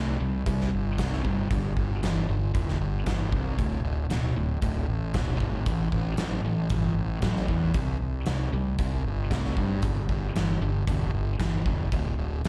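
A double-tracked, overdriven electric guitar riff and an up-front, fuzz-drenched fingered bass open this sunny, swaggering classic rock excerpt at 115 BPM in a straight 4/4, cycling through C5, G5, D5 and A5 power chords, with the guitar's slapback echo adding bite before a polished 80s drum kit with a gated, airy room sound enters at 0.5 seconds on tight kick, medium-tuned snare and hi-hat, all heard as a live gig through the venue's PA with recital hall reverb.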